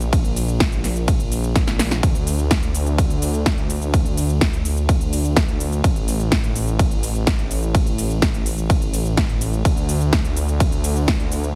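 Dry and heavily compressed with a radio-ready sound, this emotional, powerful festival progressive house excerpt sets an up-front, punchy electronic kick beneath a big-room dance kit of crisp hi-hats, ride cymbal, shaker and snare drum, both layered, tape-warm and re-recorded in a large room, while a thick, menacing detuned saw bass, saturated and beating under sidechain pumping, fills the low end and a drum fill arrives at 1.6 seconds.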